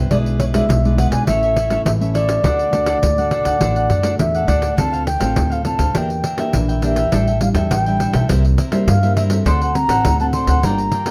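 Sunny and joyful, this short cut from a longer samba and choro piece moves in a straight, even four-beat feel. A close-miked baroque flute carries the melody with an airy, tongued, straight tone. Beneath it, a plucked upright bass with steel strings sounds woody and up front, while a nylon-string guitar with old strings adds deep, thumb-plucked classical accompaniment. A crisp, bright picked cavaquinho fills out the harmony higher up, and a jingly pandeiro stays close and dry. The opening section gives way to a second at 4.8 s, where the harmony turns to minor-leaning chords, all within a moderate studio reverb and a dark, warm production.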